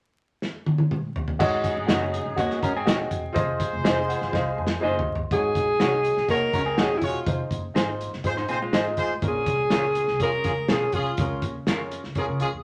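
This short cut from an uplifting, danceable 1960s-style soul piece at 123 BPM in Ab mixolydian opens with a drum fill on an up-front kit with dark cymbals and a punchy kick. At 1.4 s the horns, a short-sustain baby grand piano and a woody, growly upright bass enter, soon joined by twangy, slightly broken-up guitar stabs and a clean, hollow-body riff on semi-hollow guitar, and the piano plays a fill leading into the next section. From 5.3 s a clear alto saxophone carries the melody up front with light vibrato and scooped notes over the pop-style horn section, as the chords move from Ab7sus4 and Fm7 to Bbm7 and Db6, all set in moderate studio reverb with vinyl crackle.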